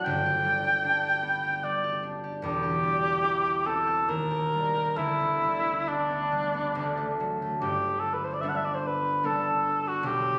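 A mellow cor anglais carries the melody with vibrato, present and up front, over an up-front, ringing, fingerpicked concert harp accompaniment in this serene, warm romantic classical duo excerpt in G major, moving in a rubato 3/4 at 65-78 BPM and shifting into a new section at 7.6 s, heard through moderate scoring-stage reverb and captured on a phone in the room.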